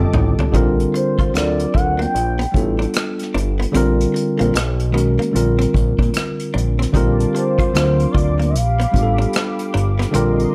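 Relaxed and sensual, this neo-soul R&B excerpt sways at 75 BPM with a swung sixteenth feel, opening on a drum fill from an unplugged kit played with bundle sticks in an airy small room, while a clean tine electric piano and a fat, detuned analog bass with a moving notch filter sit up front, a compressed hollow-body archtop guitar adds a second line, a gliding portamento lead with vibrato and tape echo carries the melody from 1.0 s, and a mellow chorused pad returns at 6.9 s over jazzy chords such as F13 and D7alt in a dark, lightly reverberant mix.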